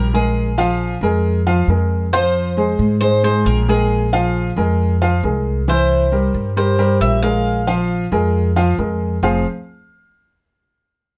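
The sound is dark and warm, with a light reverb and a production that keeps all three players up front. This short cut from a longer piece is Cuban son in a guajira vein, in a straight four with a warm, danceable mood. The Cuban tres carries the melody, its picked double strings mellow yet metallic, with some courses doubled at the octave, and it stops at 8.7 seconds. Beneath it, a worn, intimate grand piano plays arpeggios with a boxy tone, short sustain and audible action noise. The upright bass holds the low end with woody, thumpy pizzicato on steel strings, and both it and the piano play on to 9.4 seconds, just after a new section begins at 9.2 seconds.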